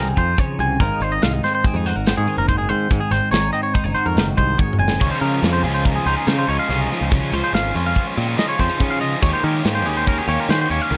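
Bright and wistful, this math rock and midwest emo excerpt moves at 142 BPM in 5/4 in Db major. A compressed, clean twelve-string electric guitar colored by a phaser sits under twangy picked arpeggios from a second electric guitar, while a punchy picked electric bass holds the low end. An airy, polished, up-front studio drum kit with a punchy kick enters at 0.2 s and plays a fill at 4.6 s, and an overdriven, double-tracked stack guitar riff joins at 5.0 s. The mix stays dry over chords moving from Dbmaj9 through Ab13 to Eb9sus4.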